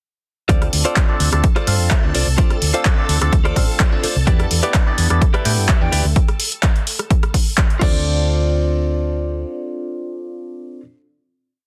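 An overdriven, punchy four-on-the-floor kick sits up front in this funky, groovy filtered disco house piece, joined by an analog drum machine's hats, rim clicks, claps and crash, and a round, dark hollow-body bass playing a syncopated line. A bell-like tine electric piano with phaser, a bright, clean direct guitar playing a funk chord rhythm, and a lush sawtooth string machine in the background carry the Dm7 and Em7 chords with 12-bit sampler grit and sidechain pumping, while an airy silver flute with vibrato and digital delay slips in a brief phrase at 5.8 seconds. The drums stop at 7.9 seconds, and a final hit from 8.1 seconds closes the piece in a dense, heavily limited mix.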